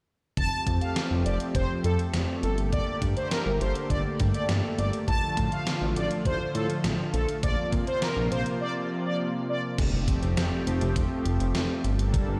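A gated 80s digital drum machine, a chorused synth bass, a lush unison pad and an analog synth brass line enter together at 0.4 seconds in this wistful, upbeat synth-pop fragment at 102 BPM in F major, moving through Fadd9, Gmadd9, Dm/A and Bbsus2. A thumpy kick and gated-reverb snare sit up front beside the glossy, pulse-width-modulated bass, while the detuned, warbling pad holds sustained chords and the fat, wave-folded brass carries a second line with chorus and delay until a break at 8.6 seconds. At 9.8 seconds a very quiet electronic impact arrives as the chords return to Fadd9, with the recording ringing in a bare stone room.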